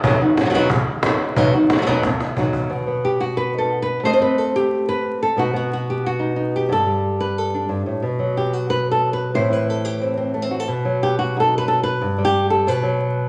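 A lush, reverberant studio space with a faint layer of vinyl crackle frames this passionate, mournful flamenco excerpt, led by an up-front, fingerpicked acoustic flamenco guitar that carries the melody across a span from low to bright registers. A woody cajon with faint snares plays only at the start, closing with a drum fill around 2.2 seconds before dropping out at 2.6 seconds and leaving the guitar alone. The harmony keeps circling back to B, colored by Am7 and Gsus2, with a brief chord-free passage near 12.0 seconds before settling on B5.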